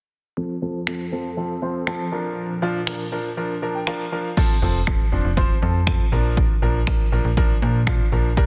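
Upbeat and euphoric, this dance-pop excerpt moves at 120 BPM in F major, with a clear, up-front concert grand piano playing accompaniment under sidechain pumping and a filter sweep from 0.4 to 4.4 seconds, then adding a fill just before the second section. A glassy, ethereal FM pad with ensemble chorus and its own reverb holds sustained chords until 4.3 seconds, while a tape-tinged house kit with a punchy kick, finger snaps and crash sits up front. At 4.6 seconds a snappy FM bass with a metallic attack enters, pumping with sidechain compression in a dense, heavily limited master with little reverb.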